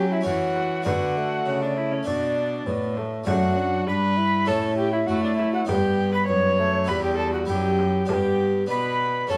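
Up front, a rich cello played on gut strings in period style carries the bass with a reedy, lightly vibrato-touched bowed tone, anchoring this courtly yet rustic renaissance-style consort dance at 100 BPM in a straight 4/4. Above it, a mellow tenor recorder sings the melody with an airy, woody voice, a crisp chiff on each note and gentle vibrato, while a single viola, also gut-strung and bowed, traces a second line with a warm, slightly nasal colour. A dark solo bassoon and a full-bodied harpsichord, plucked in the French manner on two sets of strings, fill in the accompaniment. From 0.3 s, a warm, band-limited, vintage-sounding frame drum adds soft acoustic percussion beneath the ensemble. The harmony moves from F# minor through D, A and G to E minor and back to G, all set in a moderate stone-room reverb with a layer of vinyl crackle across this 9.4-second cut from a longer piece.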